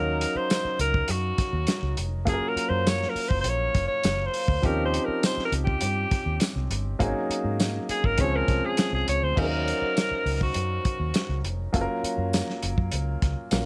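A studio ambience frames this silky, bittersweet slice of lush 1970s-style soul at 101 BPM in Eb dorian, where a bright alto saxophone with light vibrato carries the solo melody until 9.4 seconds over a polished, intimate concert grand piano, a dark, round, foam-muted fingered electric bass and a dry, muffled drum kit with dark cymbals and a tight kick, while a jingly tambourine sits in the background and a very quiet, metallic soft-mallet vibraphone first rings in at 4.3 seconds.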